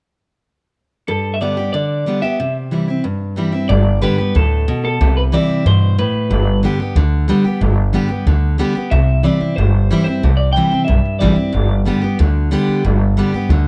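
A retro, rowdy rockabilly excerpt in G major runs at a brisk 184 BPM with a straight 4/4 feel. A picked steel-string acoustic guitar sits up front from 1.1 seconds onward, its full-bodied jumbo tone carrying the accompaniment with audible finger squeak. An electric guitar through a small old amp takes the melody in twangy, slightly broken-up phrases coloured by tape echo, playing from 1.1 to 6.6 seconds and returning at 8.9 seconds. At 3.7 seconds an upright bass joins with woody, thumpy pizzicato on gut strings, also placed up front. The chords move between G and C throughout, and light reverb with small room ambience gives the piece an intimate, vintage feel.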